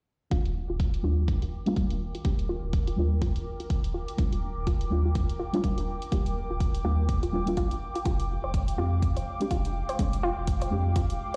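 A swung 124 BPM pulse of deep, up-front electronic kick and dark low-passed hi-hats drives this smooth, deep house excerpt, where a round analog bass, soft detuned chord stabs through analog delay, a nasal wave-folded pluck arpeggio with tape echo and a filter sweep, and an airy breathy pad entering at 0.9 seconds all pump against the sidechain over Ebmaj7 moving to Fm69 at 8.1 seconds, while a very quiet, nostalgic lo-fi tape-like pad joins at 1.6 seconds inside a large studio reverb.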